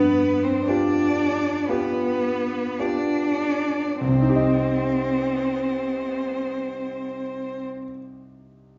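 This short excerpt sounds as if heard from further back in a reverberant recital hall, with a softened, dulled top end and a gentle wash of reflections. A slow, elegiac romantic movement for piano trio unfolds with yearning rubato: a distant, focused violin carries the melody with vibrato while an up-front, rich cello sings a second line with soft attacks, portamento and expressive vibrato, over a smooth, vintage-toned grand piano accompaniment with deep bass. The music slows through its opening 4.0 seconds, moving from a G7 chord to C minor, and the violin and cello stop at 7.6 seconds, leaving the piano to sound alone until 8.8 seconds.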